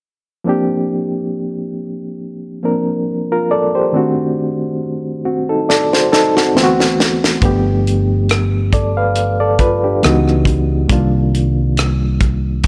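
An R&B and neo-soul groove in a smooth, soulful mood, cut from a longer piece, moving at an unhurried pace with a light swing. A barky, reedy electric piano opens alone, lightly overdriven with a fast tremolo and sitting up front, carrying the rich chords that shift from Bb69 through D7b9 and D13 toward G7. At 5.7 seconds a tight funk drum kit enters with a fill, its high-tuned snare, tight kick, hi-hat and rim click sounding natural and close. A mellow fretless electric bass joins at 7.4 seconds, dark, round and punchy, as the harmony moves on to Dbm11 and Cm11. Light reverb gives the whole a small-room ambience.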